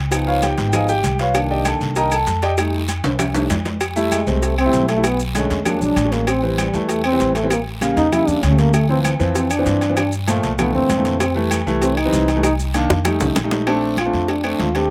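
A straight 4/4 pulse at 195 BPM drives this lively, sophisticated Afro-Cuban jazz excerpt, with woody pizzicato upright bass and a long-sustaining grand piano up front, ringing, saturated agogo bells and timbales over a dense bed of tight cowbell and bongos, thick-skinned congas, soft claves, raspy guiro and grainy maracas; the piano takes the opening solo through 3.8 s, joined by a drum fill from 3.0 s, and then, as the harmony settles into F major, a breathy, mellow trombone with light vibrato enters at 4.1 s to carry a smooth solo through the end.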